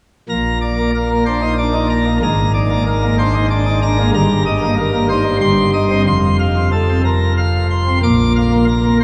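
Jubilant and brilliant, this brief classical organ toccata fragment in Bb major at 93 BPM in 3/4 features a solo pipe organ on full plenum with mixtures, its chiff-edged baroque voicing sitting up front and spanning F1 to D6 from 0.3 to 9.0 seconds, moving from Bb through Eb/G, Cm/G and F back to Bb within the wet cathedral reverb of a church or concert hall that rings for 5.3 seconds.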